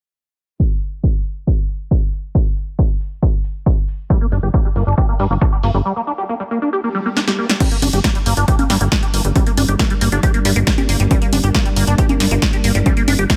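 A punchy, tape-warm electronic kick sits up front from 0.6 seconds, joined by an analog drum machine whose congas, snare, hi-hats and crash cymbal pump against the sidechain in a small re-recorded room, driving this soaring uplifting trance excerpt in G minor at 137 BPM. From about 4.1 seconds a squelchy, resonant liquid acid bass spins arpeggios through phaser, ensemble chorus and dub echo, and at 4.3 seconds a funky, tube-saturated plucky bass with ring-modulated sawtooth and square tones pushes forward. A distant electronic swell and a drum fill lead at 7.6 seconds into a new section where a thick, warbling vintage unison pad of detuned sawtooths sustains chords in the background as a filter sweeps across it, all within a digital ambience.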